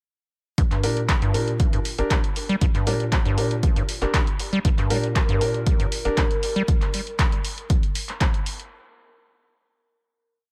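A straight four-on-the-floor kick drives this short, gritty acid house piece, sitting up front with a punchy analog character and the close sound of a small room, while a drum machine adds programmed closed and open hi-hats and a handclap backbeat. Beneath them, a squelchy, resonant square-wave acid bass runs a sixteen-step line with accents and slides. Its plucked filter, fast attack and decaying notes are roughened by tube saturation, pumped by sidechain compression and trailed by analog delay. A grand piano plays syncopated chord stabs, one shape moved in parallel, each echoing through its own delay. Near 5.2 seconds a warbling, lo-fi pad appears in the background, a detuned, nostalgic held high note softened by chorus, phaser and reverb and given its own sidechain pumping. The driving groove sits in light reverb with an echo-heavy mix, and the kick and drum machine carry on briefly after the other parts stop, ending by 8.7 seconds.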